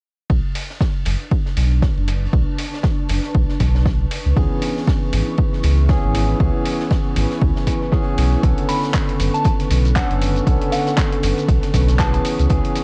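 A short cut from a longer deep house groove at 118 BPM in B dorian, it opens at 0.3 s with a punchy, overdriven electronic kick and a deep, full sine sub bass pumping up front, while a dry, high-passed cocktail kit of hi-hat, ride and high-tuned snare ticks in the background and a dusty, gritty sampler kit of handclaps, hi-hat and shaker adds a swung 16th-note shuffle. An ethereal, detuned pad drifts in with ensemble chorus, tremolo and reverb, and at 4.4 s a barky, bright tine electric piano begins delayed, lo-fi stabs over the Bm9 and C#m7 changes. From 8.7 s a soft, mellow FM bell melody glints through chorus and delay, keeping the mood warm and hypnotic in a small, tape-tinged room.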